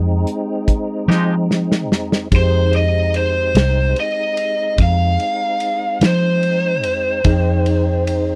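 Slow blues in a soulful, brooding 12/8 groove, cut from a longer piece, where a dark, round, foam-muted electric bass and a soul drum kit with dark cymbals and a tight kick sit up front under a fat tonewheel organ turning through a slow rotary speaker with key click and a clean tine electric piano in the background, a bright, twangy guitar flicks in at 1.1 seconds during a drum fill, and a picked lead guitar through a small cranked amp takes an overdriven solo from 2.3 seconds, all in a dry, close 1970s-style studio sound.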